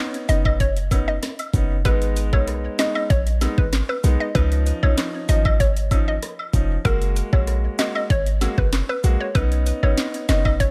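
Set in a digital ambience, this sultry, hypnotic dancehall excerpt at 96 BPM in 4/4 pairs an up-front, overdriven electronic drum kit (knocking kick, sharp snare, metallic hi-hats, rim clicks and handclaps) with a deep, boomy 808-style bass, while a hollow, bouncy square-wave pluck with chorus and digital delay carries the melody over a clear concert grand piano's short-sustained accompaniment and cabasa and woodblock sit in the background, all cycling through Badd9, G#m, C#add9 and F#add9.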